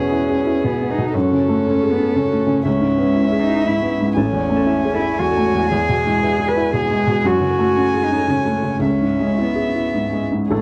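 A dry, close studio sound in a 1970s style, touched by light reverb, frames this tender, hopeful neoclassical excerpt for piano and strings. It moves in a rubato 3/4 at roughly 105-121 BPM, drifting through E, F#madd9, C#m7 and Amaj7. Up front, a felt-muted upright piano gives a soft, mellow, intimate accompaniment with short sustain and audible action noise. A single con sordino violin carries the veiled, dark melody with vibrato and a soft attack, while a muted cello sits more distantly on a second line, its bowing colored by portamento. In the background, a fingerpicked concert harp rings out arpeggios through a tape echo. At 10.5 s, a very quiet muted viola appears briefly on a single smooth-topped note.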